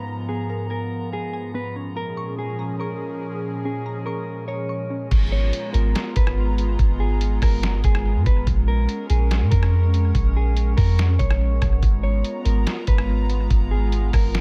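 A mostly dry, echo-heavy mix carries this hazy, spacious excerpt of atmospheric cloud-rap in a half-time feel, where a clean, fingered electric guitar sings a dark melody through analog delay over breathy pad chords with chorus and sidechain pumping, a background wash of drifting glass-harmonics overtones, and crystalline wavetable pluck arpeggios that stop at 5.1 s, just as a round, deep 808-style bass and a muffled, tape-warm, pitched-down sampler drum kit with thumpy kick, snare, rim click, hi-hat and crash arrive up front.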